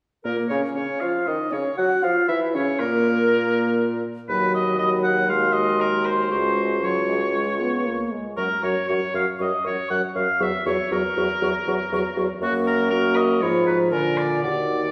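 A cheerful, lively wind quintet movement in the classical style opens at 0.2 s with flute, oboe and bassoon sounding together, joined at 0.3 s by French horn and clarinet, and the five play on through 14.9 s of this fragment from a longer piece. The oboe sits up front with a clear voice and a light vibrato, carrying the second line just beneath the melody. The airy, hollow silver flute takes the tune in a straight tone with a crisp attack, heard close yet placed in the background. The bassoon grounds the harmony with a bass line touched by its own light vibrato, while the French horn, with its smooth top, and the mellow clarinet fill in the accompaniment. A wet recital-hall reverb and a listening spot further back in the room lend a roomy distance, as the harmony moves from F#/A# through A#dim, G#7/D# and C#sus4 toward F#7/E and a closing Bb7.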